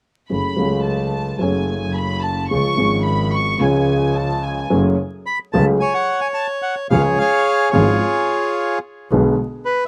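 A dry, open-air recording with vinyl crackle carries this passionate, dramatic tango excerpt in F# minor at a rubato 109 BPM, where a dark, woody upright piano and an earthy, bowed double bass with light vibrato underpin a floating, sul tasto violin section that voices a soft-attack second line until 4.7 seconds, before a reedy, smooth bandoneon takes the melody up front from 5.3 seconds.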